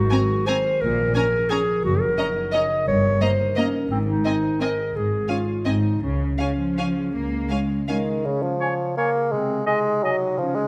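Swaying in 3/4 with a rubato lilt between 153 and 186 BPM, this sweeping, festive orchestral ballroom waltz in Db major is cut from a longer piece. Two bowed violin sections carry the melody and a second line with lush vibrato, the melody sitting in the background, while a smooth viola section fills in the accompaniment beneath them. A rich cello section and a woody double bass section hold down the bass, and a ringing, thumb-plucked concert harp spins arpeggios throughout. An up-front clarinet with a soft attack sings a second line from the start, and at 7.9 seconds a warm bassoon takes over the accompaniment as the strings fall away. Around 8.6 seconds a clear oboe with light vibrato and an airy, mellow flute ensemble add brief second lines, with the orchestra set in a moderate scoring-stage reverb.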